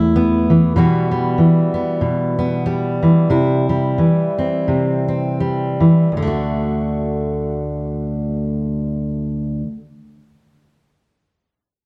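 A fingerpicked steel-string jumbo acoustic guitar plays alone throughout this gentle folk fragment, its fresh strings sounding full-bodied and up front with a lightly swung lilt. The pace slows from 0.8 to 6.1 seconds as the harmony moves from Asus2 through Emadd9/B to C, before settling onto D for a brief closing passage. A moderate recital-hall reverb and a dark, warm production give the piece an intimate glow.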